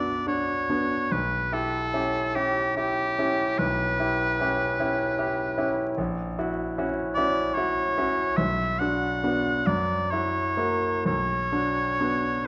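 Through vinyl crackle and the dark, warm haze of a recital hall's moderate reverb, this solemn, yearning romantic fragment in a rubato 12/8 sets a bright oboe melody with light vibrato up front over a brilliant concert grand piano accompaniment with deep bass and short sustain, moving through its minor-key harmonies before settling home at 11.1 seconds.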